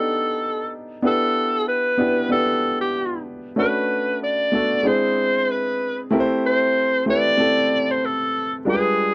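A breathy, whispered alto saxophone carries the melody up front in this soul excerpt. Its soft attack, vibrato and bright, vintage pop-style tone give it an intimate, romantic character. A warm grand piano, also up front, accompanies it throughout at 94 BPM in 4/4 with a gentle 16th-note swing, moving through lush chords from B7alt and Em7 to Bm9, E7b13 and Am9, all within a dry, close 1970s-style studio sound touched with light reverb.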